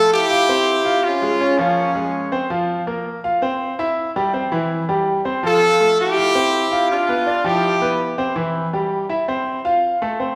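A straight 4/4 Latin groove at 164 BPM in F major drives this sunny, danceable fragment of a longer piece, where a punchy, tight pop-style horn section carries the melody up front in two bursts, from 0.0 to 2.3 seconds and again from 5.5 to 8.2, while a bright concert grand piano with a deep, natural bass provides the accompaniment throughout, all bathed in the wet reverb of a resonant recital hall.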